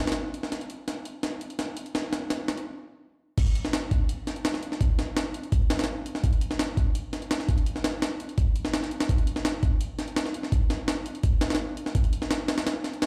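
Heard through a big sound system in a bare room with a large studio reverb, this atmospheric, raw drum and bass excerpt at 168 BPM features only a compressed, pitched-up, gritty jungle sampler-style drum kit sitting up front, its thumpy kick, medium-tuned snare, hi-hat and crash cymbal building through a drum fill from 0.5 seconds, halting at 2.7 seconds, then crashing into the drop at 3.4 seconds.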